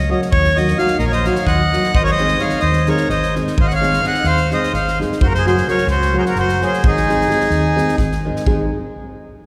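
A reedy, close-miked accordion melody and a round, amped hollow-body electric bass open this exuberant, wild Balkan wedding-band fragment in 7/8, joined almost at once by a dark, fingerpicked nylon-string guitar and an airy, polished country drum kit with a punchy kick and medium-tuned snare, while a second, full-toned accordion line enters at 1.0 s as the chords move from Ebm through Ab and Gb back to Ab inside a long church reverb.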